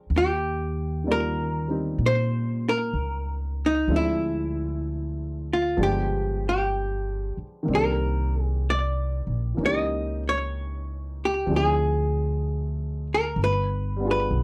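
This dry, close recording has a 1970s studio sound with a light touch of reverb, and it is a short section taken from a longer piece. It is a melancholic, wistful jazz ballad at 63 BPM in 4/4, with a gentle swing on the eighth notes. An amplified hollow-body archtop guitar carries the melody from 0.2 seconds, its clean, compressed, picked tone sitting up front with a slapback echo. A pizzicato upright bass with steel strings provides a woody, thumpy low end, also up front. A mellow, intimate baby grand piano plays accompaniment a little further back, dark in colour with short sustain and audible action noise. The harmony moves from Ebmaj9 through Dm7b5, G7b9, Cm9 and C#dim7 before returning to Dm7b5 and G7b9.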